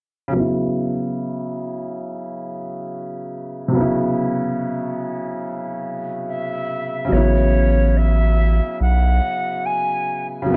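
Swung sixteenths in an unhurried 4/4 give this short hip hop passage its lazy, head-nodding lilt, with a cosy, nostalgic mood throughout. A felt-muted upright piano opens the accompaniment at 0.3 s, soft and mellow with a thin felt tone and audible action noise that makes it feel intimate; a filter sweep runs across it through the first section. A silver concert flute enters at 6.3 s with an airy, metallic melody, its straight tone and crisp attack also rounded off by a low-pass filter. At 7.1 s a saturated sub bass arrives, deep, thick and sustained, sitting louder than the piano and flute as the harmony shifts from Bsus24/C# to Aadd9. Moderate studio reverb and a dark, warm production wrap the whole passage in a hazy glow.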